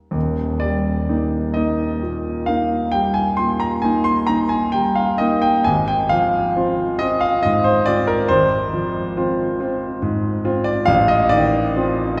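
Bathed in a wet church reverb that places the listener further back in the room, this 12-second excerpt of a tender, serene romantic nocturne features a warm, smooth, vintage-toned concert grand piano with deep bass, playing alone from Eb1 to C6 in Eb major (tuned to A4 = 443 Hz) with a slow, rubato 12/8 pulse of 41-48 dotted-quarter beats per minute, moving from Eb to Fm/Ab at 5.7 seconds and arriving on F7/A at 10.9 seconds.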